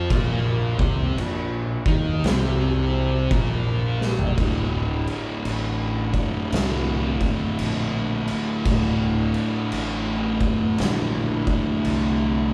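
With the band captured live in one room under light reverb, this ominous, hypnotic stoner and doom metal passage pairs a thick, double-tracked fuzz guitar riff up front with a growly, overdriven fingered bass and an oversized, low-tuned acoustic drum kit whose punchy kick, fat snare, toms and crash sound dark and gritty with a rolled-off top, moving in a swung 4/4 from a Bb5 to a D5 chord at 4.4 seconds after a drum fill at 3.9 seconds.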